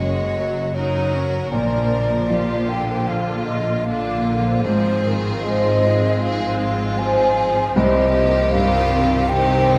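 Bittersweet and sorrowful, this rubato excerpt of an emotional orchestral film score sets an airy, hollow flute and a smooth violin section as the second lines over lush, focused viola, a deep-voiced piano, a bright ringing harp in arpeggios, and bowed cellos with distant double basses beneath, all carried by a moderate scoring-stage reverb as the chords move from Gb through Bb and Fm/Ab to Cm.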